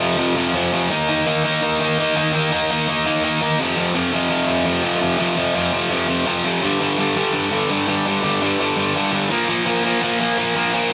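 A bright, overdriven electric guitar carries this raw, urgent punk clip, picked and double-tracked and placed up front from 0.0 s to 10.9 s. The tempo is 168 BPM in straight 4/4. The guitar moves through power chords from F5 to Eb5 and back to F5, then settles into G minor at 6.6 s with G5 and, at 9.3 s, Bb5, spanning F2 to Eb4. The sound is of a band playing live in one room, with light reverb and a top end that stops at 7.7 kHz, and the tuning sits slightly sharp at A4 = 441 Hz. The clip is cut from a longer piece.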